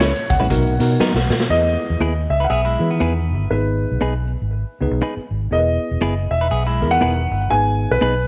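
Uptempo 1960s-style soul at 120 BPM with a swung feel, uplifting and danceable, cut from a longer piece. A dark, mellow grand piano with audible action noise and tape echo carries the melody up front over a worn, slightly out-of-tune tine electric piano, compressed clean guitar stabs and a round, foam-muted fingered bass. Gritty, saturated garage drums with a punchy kick and a jingly tambourine open the passage, the drums ending on a fill at 1.5 seconds, before a hollow-body semi-hollow guitar riff enters at 2.4 seconds over chords moving from C#m7 through E and G#m, all set in a small room.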